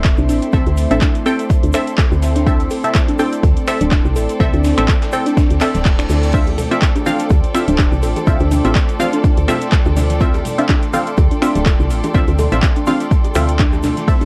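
An overdriven, up-front electronic kick drives this deep, late-night deep house excerpt at 124 BPM in D minor, joined by a woody, mellow FM bass with tube saturation, an overdriven deep house kit of metallic hi-hats, ride, crash, finger snaps and handclaps, a very quiet, gritty sampler-style kit of hi-hat and snare, a grainy tube shaker, a smooth bowed string section with vibrato, a warbling, nostalgic pad with chorus and reverb, a soft pluck arpeggio through analog delay, and muted, phased dub chord stabs carrying 12-bit grit and tape echo, with sidechain pumping on the pad, strings, pluck and stabs, while a reverse cymbal sounds at 5.5 seconds and tape-toned bongos and congas enter at 6.5 seconds.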